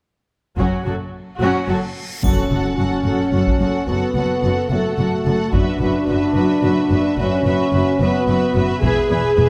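Cinematic, epic orchestral film score in F# minor at 73 BPM in a straight 6/8, dramatic and relentless, this excerpt opens at 0.6 seconds with heavy-stick taiko drums driving beneath lush, bowed string sections, woody double basses and smooth cellos holding the bass while violas with portamento and a studio violin section carry the accompaniment and second line. A huge, bright reverse cymbal swells from 1.8 seconds into an impact that lands at 2.2 seconds alongside a faint triangle, mellow, distant French horns entering with sustained chords and a soft-attack symphonic violin melody high above, all moving from F#m through Bsus4/F# to E in a moderate scoring-stage reverb.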